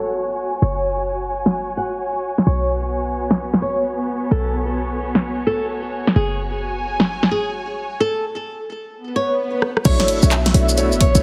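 A late-night, skippy two-step UK garage excerpt where a fingerpicked flamenco guitar melody with digital delay sits up front over a chorused, sidechain-pumped sawtooth pad, bowed strings with vibrato, and a tight sine 808-style bass, with the filtered garage kit and its cracking snare arriving at 1.5 seconds, a filter sweep and electronic swell building to a drum fill, and a drop at 9.9 seconds bringing in a punchy electronic kick and dark, long-sustaining grand piano stabs, all under a lush hall reverb and a heavily compressed, radio-like sound.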